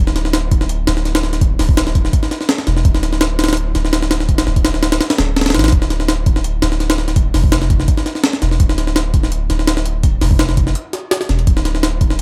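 Drum and bass in a jungle vein, this raw, nostalgic excerpt moves at 167 BPM in D minor, cut from a longer piece. A compressed, pitched-up jungle drum kit sits up front with gritty sampler character, a thumpy kick, a high-tuned snare and hi-hat, carrying the air of a large room. Beneath it, a soft dub sub bass holds deep, round tones between D1 and A1, blending triangle and square wave with a fast attack and sustained notes, all in a dry mix with little reverb.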